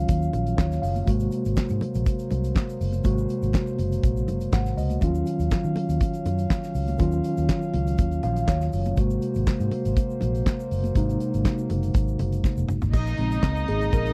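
Disco with a sultry, driving feel, this short cut from a longer piece moves in a straight four over a dry, close studio sound in a 1970s style. A damped 70s drum kit sits up front with a fat snare and tight kick, adding handclaps, hi-hat, crash cymbal and toms, while a dark, foam-muted fingered electric bass with a round, amped tone anchors the low end beside it. A mellow tine electric piano plays clean accompaniment through its built-in speakers and drops in short fills, as a French horn section holds soft-attack chords with light vibrato in a classical style. Bright, high-tuned congas and a grainy egg shaker add very quiet percussion in the background. After a drum fill at 12.4 seconds, the harmony shifts at 12.9 seconds, where the electric piano takes a solo and a bowed string section floats in with a pure, sul tasto second line.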